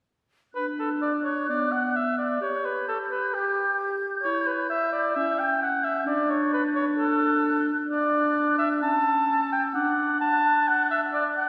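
Graceful and cheerful, this quick classical-period movement for symphony orchestra moves at 130 BPM in D major with a rubato feel, cut from a longer piece. An airy, hollow concert flute sings high with vibrato, while a warm oboe with light vibrato and a smooth top and a vintage-toned clarinet sit up front. The flute enters at 0.5 seconds and the other two follow a moment later, all with soft attacks. The sound is heard from further back on a wet scoring stage, with some lossy compression artefacts.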